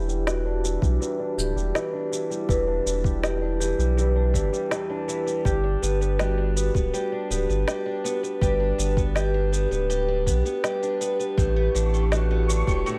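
Playful and delicate, this folktronica fragment, cut from a longer piece, sets a shimmering, octave-doubled picked twelve-string acoustic guitar up front on arpeggios through a low-pass filter sweep and tape echo, over a round sine sub bass, a soft electronic kick and a woody snare with electronic shaker, while a dark, ringing vibraphone carries a second line through digital delay, and a flickering, grainy granular texture enters in the background at 11.7 seconds, all in a dry room as the chords move from Em7 to Gmaj7 to A9sus4.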